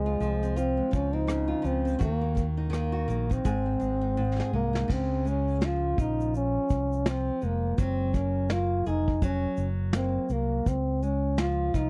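A lightly swung sixteenth-note groove in 4/4 gives this short acoustic pop excerpt a carefree, sunny lilt, with a soft brush kit entering at 0.2 seconds (dark cymbals, punchy kick, rim clicks and shaker) and playing a fill from 4.2 to 4.9 seconds into the second section. Up front, a bucket-muted trombone carries the melody in a veiled, pop-style solo full of vibrato and scooped notes, while a small-sounding fingerpicked nylon-string guitar, complete with finger squeaks, and an amped fingered electric bass fill in underneath. The dry, close sound recalls a 1970s studio, and the chords move from Dbmaj7 through Ebm and Ab back to Dbmaj7, then on to Gbadd9 before settling back on Dbmaj7.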